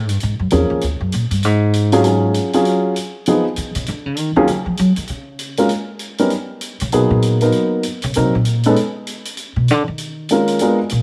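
Jazz piano trio in a cool, late-night swing, with the woody, pizzicato upright bass up front and taking a solo across the whole passage, from 0.0 to 11.0 seconds. A soft hi-hat with a rolled-off top enters at 0.1 seconds, and the intimate upright piano joins at 0.5 seconds, its short sustain and audible action noise giving it a close, natural presence. A moderate echo chamber reverb adds depth as the harmony moves through minor sevenths, half-diminished chords and brief chordless passages in this fragment of a longer piece.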